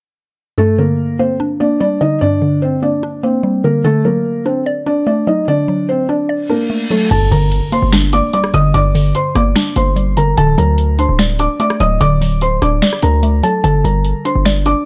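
Menacing and brooding, this half-time trap excerpt opens with a soft, felt-muted upright piano carrying the melody up front, its action noise audible, over a woody, round synth pluck treated with chorus and phaser, both filtered dark as the harmony moves between G minor and D. A reverse cymbal rising from 6.5 seconds into a background impact at 7.1 seconds brings in a heavy, punchy 808 bass and a booming analog drum machine with crisp snare, metallic hi-hats, rim clicks, finger snaps and crash. The production stays dry and dark, with a tape-warm quality on the drums.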